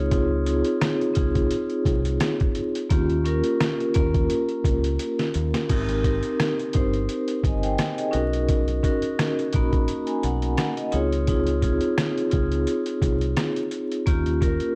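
A dry hardware sound with transformer saturation and vinyl crackle frames this confident boom-bap hip-hop excerpt at 86 BPM in Ab major, swung on the sixteenths, with chords moving from Dbmaj7 and Eb7 to Abmaj7 and Bmaj7. Up front, a metallic, ringing vibraphone played with medium hard mallets carries the harmony through cassette-tape coloring and filtering, its slow motor vibrato sitting in a boxy small room, while a dark, round fingered electric bass holds down the low end. The compressed, pitched-down sampler-style drum kit brings a thumpy kick, medium-tuned snare, rim click, hi-hat and crash with tape-warm, gritty 12-bit character, and a drum fill at 5.0 s leads into the second section at 5.7 s.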